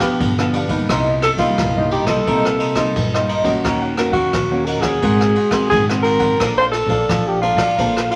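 Over a straight 4/4 samba and choro groove, a brushed jazz kit with a boomy kick, dark cymbals on the ride and rim clicks sets a festive, lively mood, joined at 0.2 s by a woody, thumpy pizzicato upright bass on gut strings. Up front, a breathy alto saxophone sings the melody in a warm subtone with light vibrato, while a crisp picked cavaquinho and a dark fingerpicked classical nylon-string guitar fill in chords that move from G7 through Cm7, Ebm7 and Ab9 to Bbmaj9. Wet studio reverb and a layer of vinyl crackle color this short passage, cut from a longer piece.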